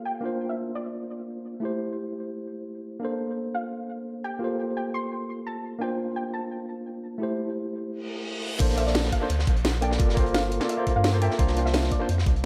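A soft, round pluck carries a dark, gentle melody from the opening second, thickened by ensemble chorus and tape echo, while a worn, slightly out-of-tune tine electric piano plays chords up front with light overdrive and its own tape echo. This melancholic, dreamy piece of liquid drum and bass moves through a cycle of C9sus4, Am7, Bbmaj9 and Gm11, the mix soaked in echo, spring reverb and digital ambience. At 8.0 seconds a reverse cymbal and downlifter enter faintly in the background, leading into the drop at 8.6 seconds. There a deep, sine-like sub bass arrives up front alongside a knocking electronic kick and a layered drum and bass kit with a cracking snare, crash and low-passed hats. A gritty, saturated breakbeat kit with a high-tuned snare and rolled-off top sits lower in the mix, adding acoustic room texture to the drop before the passage cuts off mid-flow.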